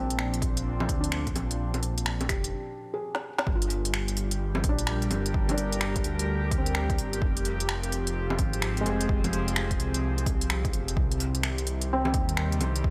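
A felt-muted upright piano with dub echo, a breathy chorused pad and a rumbling detuned saw bass open this nocturnal, wistful future garage excerpt at 128 BPM with swung 16ths, all three pumping against an overdriven, punchy electronic kick that arrives at 0.4 seconds, while an up-front organic electronic kit of bongos, finger snaps, smooth hi-hat and woody snare rides the groove through a break at 2.5 seconds and a drum fill into the second section at 3.5 seconds, moving from Bb13 through Gm7 and Fmadd9 to Cm under a light reverb.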